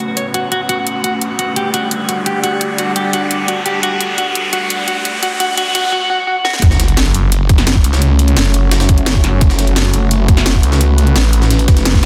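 A deep, moody ambient pad of detuned sawtooth chords with chorus and sidechain pumping opens this dark, futuristic drum and bass excerpt at 172 BPM in F# phrygian, joined by electronic risers, a sub drop and zaps and, from 0.2 seconds, a clean, fingered electric guitar playing arpeggios through spring reverb and digital delay over an overdriven kit with a cracking snare and bright hats, until the drop at 6.6 seconds brings in an aggressive, growling distorted saw bass and a tight, up-front overdriven kick, with a gritty, pitched-up jungle sampler kit tucked very quietly beneath, the whole set in a dense, heavily limited mix with lush hall reverb.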